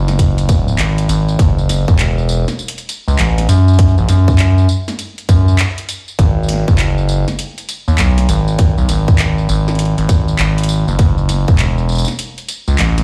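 Glitch hop with a gritty, playful swing, led by an up-front, overdriven synth bass of saturated sync tones and a moving notch, over a tight electronic kick and a softer drum kit of woody snare, metallic hats, handclaps and tambourine, the mix sounding as if played through a big sound system in a bare stone room with little reverb.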